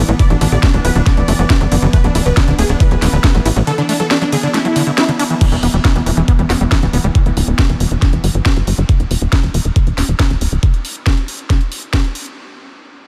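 A straight 4/4 pulse at 138 BPM drives this intense, hypnotic psychedelic trance passage, cut from a longer piece and opening in the middle of a drop. An overdriven, knocking electronic kick sits up front beside a tight, punchy sequencer bass, a sawtooth-and-square line with ring modulation and a fast, decaying filter pluck, which plays until 10.6 s. A drum and bass kit with a cracking snare, bright hats, crash and ride cymbals adds overdriven, small-room grit. The supersaw stab carries the melody with an airy, detuned unison sound through phaser, delay and sidechain pumping, stopping at 5.3 s. Beneath it, a squelchy, resonant acid bass riffs in the background with distortion and delay, while a mellow, chorused, tempo-synced gated texture holds sustained chords in the background until 8.9 s. From 5.4 s a new section brings a filter sweep on an analog synth bass, all set in a light digital ambience.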